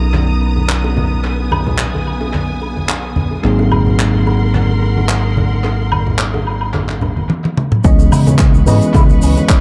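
A lightly swung groove from a tight, natural-sounding funk kit with handclaps, hi-hat, shaker, toms and woodblock joins bongos and congas and a round, punchy fingered bass in this sensual, sleek nu-disco cut from a longer piece. A clean tine electric piano through a combo amp carries the chords with tape echo, while a lush bowed string section pumps underneath, all set in an echo-heavy mix with light studio reverb. After a drum fill at 7.3 seconds, the drop at 7.8 seconds brings in an overdriven electronic kick and a twangy envelope-filtered guitar riff in the background, glazed with chorus.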